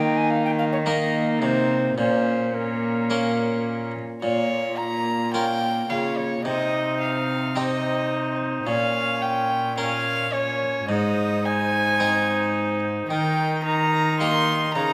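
A five-part consort starts together at once in this rustic, courtly renaissance-style dance in Bb dorian, moving at a straight 108 BPM in 4/4. An airy, wooden-toned alto recorder carries the melody with soft chiff and vibrato, while an up-front violin with reedy gut-string tone plays a second line. A bright French-style harpsichord, a more distant viola and a nasal cello fill in the accompaniment and bass, with a new section arriving at 4.2 s over chords moving through Bbm, Cm and Ab to Eb, all heard in a wet recital hall and cut from a longer piece.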